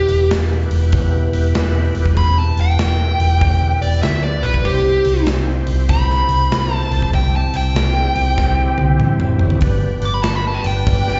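A dark, smooth lead guitar sits up front, its picked, overdriven solo running through the whole clip with a slapback echo. Beneath it, a tonewheel organ with its own crunch holds full, thick sustained chords, colored by chorus vibrato and a slow rotary speaker. A vintage bass, foam-muted and round, stays close in the mix, while a big acoustic rock kit with a punchy kick and medium-tuned snare comes in at 0.1 seconds and adds a fill from 8.4 to 9.6 seconds. This gritty, brooding blend of blues rock and southern rock has a swung feel, moving from Em to C and then to G. Heard through a venue's PA in recital-hall reverb, this live sound is dull at the top, with a small room ambience around it.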